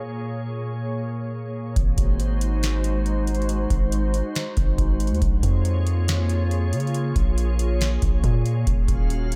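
Atmospheric cloud-rap in a half-time hip hop feel, this excerpt cut from a longer piece has an ethereal, spacious mood. It opens with a glassy FM pad holding mellow sustained chords, softened by ensemble chorus and its own built-in reverb, and shaped by a low-pass filter sweep during the first 1.8 seconds. At 1.8 seconds, a booming analog drum machine arrives with a deep kick, crisp snare and metallic hi-hats, joined by a long, sine-toned 808-style bass with a fast attack and decaying tail. The drums and bass sit up front, while the pad stays further back, pumping under sidechain compression. The harmony moves from Bbm7 through Ab7 and back to Bbm7 before settling on Ebm9, and the piece plays on until 9.4 seconds in a fairly dry mix outside the pad's reverb.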